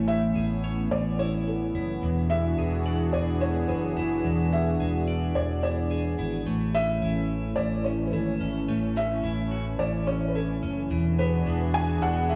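In a straight 4/4 at 108 BPM, this floating, blissful dream pop fragment, cut from a longer piece, drifts between Amaj7 and E7 chords. A dark, foam-muted fingered electric bass sits up front with a round, punchy tone in its low register. Clean, picked electric guitar arpeggios glimmer through a lush chorus and tape echo, while a vintage sawtooth analog pad holds sustained chords with a slow attack and a detuned, warbling shimmer. From 0.1 s, a felt-muted upright piano carries the melody with a soft, intimate, mellow touch and short sustain, its notes trailed by tape echo. A moderate lush hall reverb and small room ambience wrap the parts in a dreamy haze through to 12.4 s.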